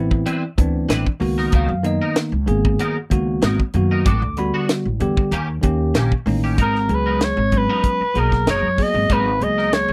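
A tight funk drum kit with a high-tuned snare drives this dry, close electric jazz fusion piece at 95 BPM with a light sixteenth-note swing, as a woody pizzicato upright bass, a bell-like tine electric piano moving through suspended thirteenth chords and a twangy, compressed electric guitar playing chorused stabs build a funky groove until a raspy, growling soprano saxophone with vibrato and scooped notes takes the melody at 6.6 s as the music settles into G# minor.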